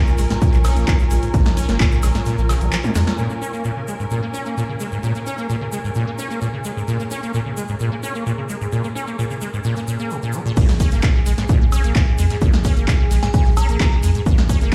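A squelchy, resonant sawtooth acid bass riff drives this trippy, hypnotic acid house cut in Bb minor at 130 BPM, saturated and pumping against a punchy electronic kick, a round sine sub bass and a tape-warm analog drum machine of claps, snare, hats, toms, woodblock and crash, all of which drop away by 3.2 seconds and return at 10.6 seconds. Underneath, a warbling, lo-fi tape-like pad holds sustained chords and takes a filter sweep through the middle stretch, while a veiled, muted string section bowing with vibrato stops at 10.6 seconds, and a grainy egg shaker and very quiet jazz brushes add texture. A glassy FM synth bell flickers in near the close, and the whole mix rings through a stone room as if played on a big sound system.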